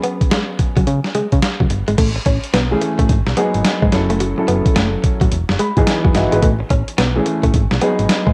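The gritty, compressed boom bap drum kit sits up front in this bouncy, punchy new jack swing excerpt, its thumpy kick, medium-tuned snare, hi-hat and crash cymbal riding a swung sixteenth-note feel in 4/4. A dark, mellow concert grand piano carries the accompaniment with deep bass and a cassette tape coloring, and it steps forward with a fill from 5.3 to 6.4 seconds. A clean, direct-recorded electric guitar picks a compressed, scooped riff through lush chorus and the same tape treatment. A round, digital FM bass with a fast attack and decaying notes enters at 0.2 seconds, adding solid low-end punch. The harmony moves from a suspended C#7sus4 opening into a lusher passage at 2.0 seconds built on major and minor seventh chords, all set in light reverb and digital ambience with the intimate character of a home cassette recording.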